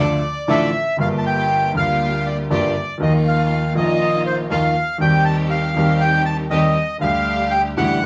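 Dramatic and melancholic, this short tango excerpt in G minor moves at 119 BPM in 4/4 with a rubato feel, its harmony passing from Dm through Gm7, Ebsus2 and Cm/Eb to Dsus4. A reedy, dark bandoneon carries the melody up front between C5 and A5, while a clear baby grand piano with long sustain accompanies from G1 to G4 and a rich chamber string section, bowed with vibrato, adds stabs further back. The three parts play together throughout, captured as a live band in one room with a wet studio reverb.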